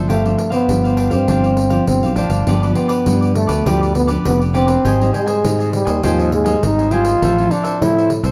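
A short cut from a lively, playful samba-choro piece at 101 BPM in a straight 4/4 opens on a bed of crisp, picked cavaquinho, a woody, full-bodied nylon-string guitar fingerpicked in a deep classical style with old strings, and a sustaining fretless electric bass that sits up front with a bright, growly, direct tone. At 0.1 seconds a solo trombone takes the melody, playing in a jazz style with a breathy, raspy, gritty growl, soft attacks and scooped notes, placed prominently at the front of the mix. A jingly, close and dry pandeiro, played with soft hands, enters at the same moment, while the guitar stays in the background. The harmony moves from G7sus4 to G7 at 2.5 seconds, where the music shifts into a new section, then on to Abmaj7 and Fmaj7/A. The ensemble is heard from further back in a studio room with a wet reverb, and the trombone's line ends at 8.1 seconds just before the piece is cut off.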